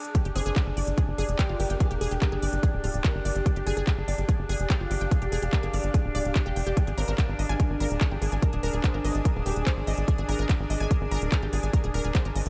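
This excerpt opens on an overtone-sweeping drone holding sustained chords around D4, its resonant sawtooth body colored by chorus, phaser and built-in reverb, alongside an ethereal, airy pad ranging from G4 to Eb6 that sits mellow in the background under ensemble chorus. It is intense, psychedelic trance at 145 BPM in straight 4/4, centered on G phrygian, with the harmony moving from G5 to Ab5 at 6.8 seconds. A heavy, up-front electronic kick drives the pulse alongside a techno kit of handclaps and smooth hi-hats in studio reverb. A tight, punchy sequencer bass with a nasal sawtooth-and-square bite works low between D1 and Ab1, while a lush, full-bodied unison pluck carries the riff from F4 to Ab5 through analog delay. The drone, pad and pluck all breathe with sidechain pumping. A very quiet formant-sweep wobble bass surfaces twice as a second line, first from 0.4 to 2.2 seconds and again from 7.0 to 9.5 seconds, adding a faint wobbling pulse-wave texture beneath the mix's light digital ambience.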